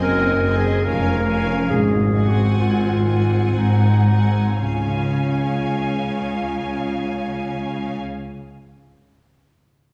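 In a rubato 3/4 that slows over the first 4.6 seconds at 56-75 BPM, this lyrical classical excerpt in Db major sets a distant, rich violin section on the melody above a lush second violin line and a bright solo clarinet, while an expressive viola section with portamento accompanies, a very quiet thumb-plucked harp rings out arpeggios, a focused cello section, a smooth double bass section and a warm tuba hold the bass, and round soft-mallet timpani enter barely audible at 1.7 seconds, the ensemble bathed in a wet scoring-stage reverb heard from further back in the room.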